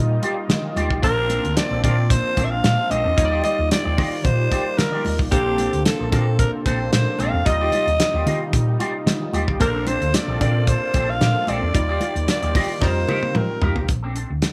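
Dry and close-sounding, this feel-good, danceable early-eighties boogie funk excerpt moves at 112 BPM in Bb major, with a damped 70s drum kit carrying gated reverb and a tight kick up front, a round, punchy hollow-body bass, and background congas with a bright, thin skin, while a detuned sawtooth polysynth comp with a filter sweep, a smooth analog pad in the background, and a dark, clean envelope-filtered guitar with analog chorus frame a breathy, raspy alto saxophone that enters at 1.0 s with slapback echo over alternating Ebmaj9 and Bbmaj9 chords, until a drum fill from 12.8 s sets up an F9sus4 turn back to Bbmaj9 at 13.9 s.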